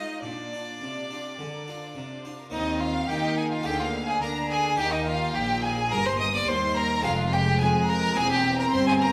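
In a straight 4/4 at 106 BPM, this festive, brilliant excerpt from a baroque-style concerto movement in E-flat major sets a clear, focused solo violin up front with vibrato over a lush, distant violin section also carrying the melody, a close second violin section carrying a higher line from 0.2 seconds, a smooth, even viola section and a warm cello section filling out the harmony and bass, and an airy French-style harpsichord with two sets of strings in the background, while a rich double bass section joins at 2.5 seconds, all set in the reverberant space of a church or concert hall.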